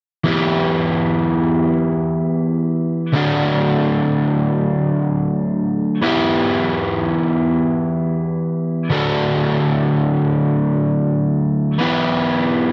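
A crunchy, overdriven electric guitar plays alone from 0.2 to 12.7 seconds, picked and double-tracked, sitting up front with a warm bite in its mid register. This brooding, cinematic rock excerpt moves in loose, unmetered time, shifting between Em and D chords. A modest booth ambience surrounds the guitar, and the sound has a dark, rolled-off top end.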